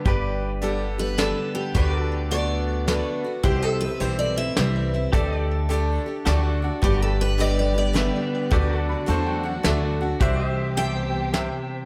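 Honky-tonk and classic country in a swung 3/4 at 106 BPM, this short, down-home and nostalgic excerpt in G major sways gently through G, D6, C, Dsus4, D, G, D and C. A picked steel-string acoustic guitar carries the melody from 1.0 seconds, its bright, full-bodied dreadnought tone touched with finger squeak, subtle chorus and delay, while a second picked acoustic guitar plays accompaniment beneath, coloured by lush chorus. An upright bass sits up front with a woody, dark pizzicato, and a soft brush drum kit plays hi-hat, snare and punchy kick with a small-room feel. A brilliant concert grand piano adds present accompaniment with deep bass and slips in fills between 6.0 and 6.8 seconds and again from 8.5 to 10.2 seconds. In the background, a twangy, clean pedal steel holds sustained chords with volume swells, and a very quiet bowed string section with vibrato and soft attack returns at 6.8 seconds. 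Moderate plate reverb soaks the mix in a dreamy haze.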